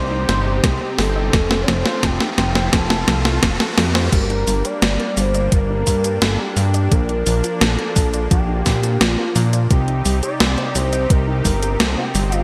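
A straight 4/4 pulse at 86 BPM drives this nocturnal, moody synthwave piece in G minor, built on a thumpy, overdriven electronic kick and a gated 80s digital drum machine of snare, hi-hat, shaker and crash cymbal with an up-front gated-reverb snare. It opens with a drum fill over a very quiet riser that ends at 4.1 s. A fat, detuned sawtooth bass with a filter sweep and sidechain pumping anchors smooth, sustained supersaw chords, while a soft, warbling round pluck plays very quiet arpeggios and an expressive synth lead with vibrato, chorus and digital delay carries the melody, the whole mix set in a lush hall reverb with a bright 1980s-style digital sheen.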